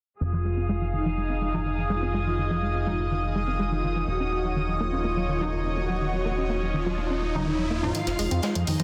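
A straight 4/4 pulse at 124 BPM drives this dramatic, melancholic melodic techno in F phrygian, cut from a longer piece. A fat, detuned analog bass sits up front beneath a tight sequenced synth arpeggio, a dark studio string section holding sustained chords from Fm7 to Ebm7, and a brassy, round synth brass melody with chorus, phaser and dub echo, while a cloudy granular pad, a very quiet evolving analog drone and punchy synth brass stabs fill in around them. A filter sweep on an analog polysynth and an electronic riser from 5.7 s build toward 7.9 s, where a rich chamber violin section and an overdriven electronic hi-hat arrive as the harmony returns to Fm7, joined a moment later at 8.0 s by a dark jazz brush kit, all under light reverb and a dense, heavily limited master.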